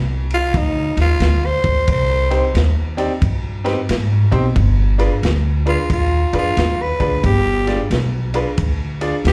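This sounds like a live gig heard through the venue's PA, with a touch of club ambience around the band, and it is cut from a longer piece. It's a mournful, soulful electric blues shuffle at 90 BPM in 4/4, swinging its eighth notes and moving through F5, Cm and G7b9. A growling tenor saxophone carries the solo throughout, up front, breathy and raspy with scooped notes in a jazz style, dressed in plate reverb and slapback echo. Beneath it, a woody pizzicato upright bass with steel strings opens the recording alone and stays prominent. A saturated breakbeat kit of tight kick, medium-tuned snare and dark ride cymbal joins at 0.3 seconds, with a rolled-off top and a small-room feel. From 2.3 seconds a brilliant vintage grand piano accompanies with long sustain, sharing the saxophone's plate reverb and slapback echo.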